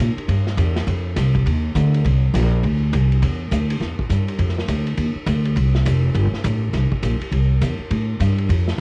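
Big band swing jazz in C major moves at a brisk 205 BPM in 4/4, with a swing feel on the eighth notes and a joyful, brassy spirit. This short cut from a longer piece presents only the rhythm section, an upright bass and a vintage drum kit, both running from the start to roughly 8.8 seconds. The pizzicato bass sits up front with a woody, growly tone from its steel strings, ranging from F1 to Bb2. Behind it, the drum kit covers hi-hat, kick, ride and snare with a small-room sound, dark cymbals, a medium-tuned snare, a punchy kick and a rolled-off top, further colored by cassette tape. The recording is dry, with little reverb, and has the intimate feel of a home cassette session.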